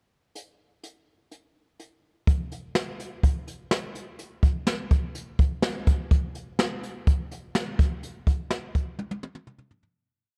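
A straight 4/4 pop groove played entirely on a jazz brush drum kit carries this short, nostalgic and moody piece, opening with a pickup bar before settling into the verse at 2.3 seconds. The acoustic kit sits up front in a studio room with light reverb, its brushes giving a smooth, dark sound with a medium-tuned snare driving a big backbeat, a boomy kick, hi-hat and toms, and a rolled-off top. A drum fill arrives at 9.0 seconds as the recording fades out from 8.0 to 10.0 seconds.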